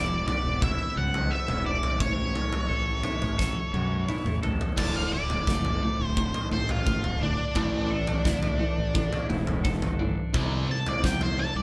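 Quiet-loud alternative rock at 86 BPM in a straight 4/4, this short excerpt from a longer piece feels restless and cathartic, played live in one room with light reverb. An up-front octave-fuzz lead guitar, dark and distorted, carries the melody from the start and turns into a solo at 4.8 seconds, ranging from D4 to A5. Beneath it, a bright, twangy twelve-string electric guitar plays compressed clean arpeggios in the background until 10.3 seconds, while a fingered electric bass with punchy overdriven fuzz holds down the low end. The huge arena drum kit sits up front with a fat snare, punchy kick, crash and toms, and a drum fill leads into the second section. At 4.8 seconds a cranked stack guitar adds an overdriven picked riff, and a scooped high-gain guitar joins at 10.3 seconds as the chords move from Em and A through Dsus2 and Asus4 to C.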